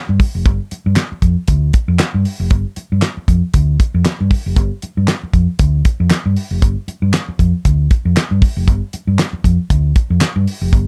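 Funk with a funky, driving mood and a light sixteenth-note swing, cut from a longer piece. A dark, round hollow-body short-scale bass, amped and fingered, sits up front from 0.1 seconds, joined at 0.2 seconds by a damped 70s acoustic drum kit with a fat snare, tight kick, hi-hat and handclaps. The dry production has little reverb and a warm, shadowy tone.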